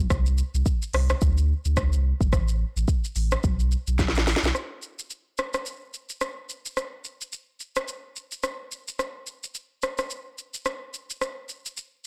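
A round, sine-like sub bass sits up front in this breezy, joyful afrobeats fragment at 108 BPM with a swung 16th-note feel, holding sustained, mellow low notes beside an electronic afro-pop kit of deep kick, sharp snare, smooth hi-hats, rim click and shaker, until a drum fill at 4.0 seconds, after which the kit carries on by itself from 4.5 seconds, all captured dry in a blown-out, overdriven recording.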